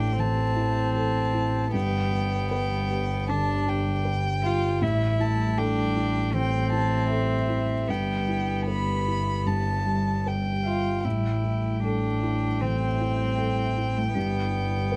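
A slow, rubato 4/4 at 77 BPM carries this longing, fragile neoclassical excerpt in A minor, where a dark, sul tasto violin sings the melody high above a pure, floating cello second line and a bowed double bass that sits up front in the low register. A felt-muted upright piano supplies soft, intimate accompaniment with audible action noise, while from 0.6 seconds a very quiet, ethereal pad with chorus and phaser sustains chords beneath, moving between Am7, G and Em/G. The close, detailed recording has little reverb, keeping every bow stroke and hammer intimate.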